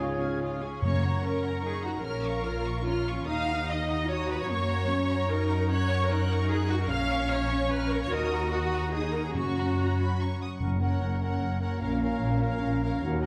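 In a straight triple metre, this adventurous, heroic cinematic passage, cut from a longer piece, carries its melody on a lush, focused violin section with vibrato. Beneath it sit a soft-edged second violin line in the background, an intense viola section up front, and rich cellos with clear, distant double basses anchoring the bass, in a wet scoring-stage reverb. A brief opening chord brings dark trumpet stabs, distant trombones, mellow horns and fleeting touches of airy flute, clarinet and oboe; hard-mallet timpani strike at 0.8 s and again from 9.3 s, and at 10.6 s the horns, flute, very quiet clarinet and softly attacked oboe return for the closing section.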